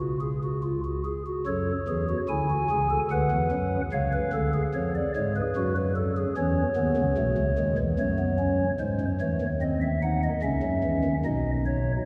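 In a straight 3/4 pulse at 73 BPM, this joyful, elegant fragment of a baroque-style three-part fugue in F# minor, tuned to A4 = 437 Hz, features a solo pipe organ on a stopped flute stop ranging from B1 to G#5, its soft, hollow, mellow voicing and chiff sitting up front within a cathedral reverb that lingers for 5.3 seconds, as the harmony moves from C# through F#m, C#7 and G#7 before arriving on B at 11.3 seconds.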